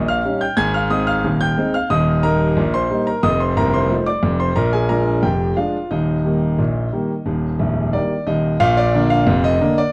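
Jaunty and lively, this solo ragtime piano piece in Eb major moves at 90 BPM in a straight 2/4, its clear concert grand sitting up front with a deep bass, smooth vintage tone and long sustain in a dry, close 1970s-style studio with small room ambience, working through Ab, F7 and Bb7 before a new section opens on Bb at 8.6 seconds, just before this cut from a longer piece ends at 9.9 seconds.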